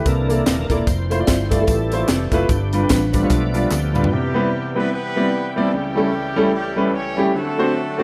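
A bright, shouting tonewheel organ with slow rotary speaker, light overdrive and chorus vibrato takes a solo over the first 4.1 seconds of this jubilant, soulful uptempo gospel excerpt, backed by an intimate concert grand piano with audible action noise, a dark, round fingered electric bass, a crisp drum kit with a punchy kick and high-tuned snare that closes the opening with a fill, background tambourine and handclaps, and a very quiet, mellow French horn section, before a clear, distant horn section carries the melody from 4.1 seconds over piano and organ in a rough home-demo mix with lush hall reverb.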